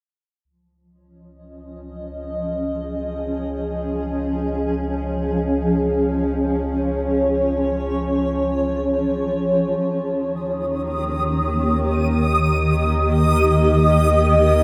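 Ambient in free time, weightless and peaceful, this excerpt opens with a deep, round sine sub bass at 0.4 s, joined at 2.0 s by an up-front granular cloud pad whose blurred, evolving sustained chords move from Dbadd9 to Eb7 at 9.8 s. At 10.7 s a reversed, detuned texture with ensemble chorus rises high above, bright and dreamy. A plate reverb with a 2.5 s decay soaks the whole mix, and the pad and bass fade in together.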